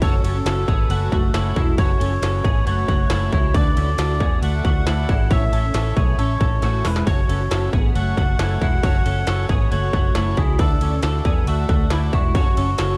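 This wistful, bittersweet stretch of jangly indie pop, cut from a longer piece, opens with the whole band at once. A reedy, breathy melodica with a nasal edge carries the melody through plate reverb, while a clean, compressed twelve-string electric guitar spins arpeggios through analog chorus. Further back sit a buzzy vintage combo organ, bathed in spring and plate reverb, and a woody, boxy fingerpicked twelve-string acoustic guitar whose octave-doubled strings shimmer under ensemble chorus. Up front, a round, foam-muted fingered electric bass and an electronic industrial drum kit anchor the groove with a distorted kick, a clanging snare, crisp hi-hats and ride cymbal, and the kit breaks into a fill from 6.6 to 7.1 seconds. The harmony sways between A and Dadd9 before turning to F#m at 12.3 seconds, all within a dark, warm production.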